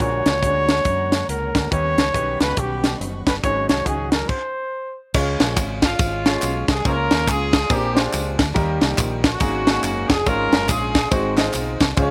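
A tight, up-front funk drum kit with a high-tuned snare drives this soulful, reverent uptempo gospel excerpt in a swung 4/4, under a round, punchy fingered electric bass and a clear grand piano with slapback echo. A mellow trumpet with scooped notes and slapback echo leads over altered dominant chords, supported by very quiet, dark bowed strings and a soft, flute-like tonewheel organ on slow rotary, until a stop at 4.3 s. From 5.1 s, tambourine and group handclaps sit in the background, and a distant, roomy horn section takes up the melody at 5.8 s, all in a dry mix with little reverb.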